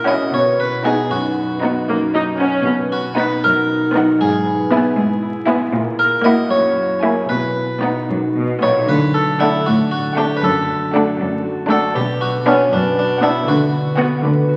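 A round, plucked harpsichord carries the melody up front from the very start, joined by a ringing, fingerpicked concert harp spinning arpeggios and a smooth cello section holding the bass. Moments later the upper strings settle in behind them: a rich, vibrato-laden violin section plays a high melody in the background, a dark, woody violin section with soft attacks traces a second line, and an even viola section fills out the accompaniment. This playful, whimsical film cue moves at 78 BPM in 6/8, opening in B major before shifting to D major at 8.9 seconds. At that point a very quiet bowed double bass section deepens the low end, and a faint triangle chimes briefly. The music sits in a lush scoring-stage reverb under the crackle of a very old 78 rpm record, giving this magical passage, cut from a longer piece, an antique charm as it turns toward B minor near its close.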